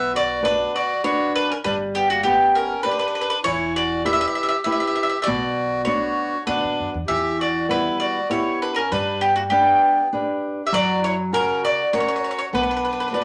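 A bright, double-strung bowl-back mandolin carries the melody up front from the very start of this passionate, romantic Italian serenade in three, joined by a clear, reedy single-reed accordion on a second line, a fingerpicked flamenco guitar with fresh strings playing warm accompaniment, and a woody, thumpy pizzicato upright bass, all set in a wet studio reverb as the minor-key progression runs through this fragment of a longer piece.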